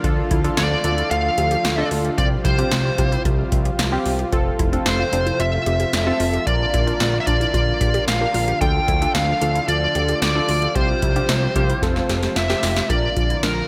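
A smooth, overdriven electric lead guitar sits up front from 0.6 seconds, carrying the melody through a tape echo over a wistful yet upbeat synth-pop groove built on a dry analog drum machine with a deep kick, punchy snare, metallic hats and gated reverb, plus a fat, saturated bass. Round, chorused analog keys and a lush, airy pad in the background fill out a Dm–Csus4–F–Bb progression, while a very quiet, detuned unison pluck adds phaser-tinged arpeggios. A drum fill from 11.8 to 12.9 seconds closes the section in this excerpt cut from a longer piece.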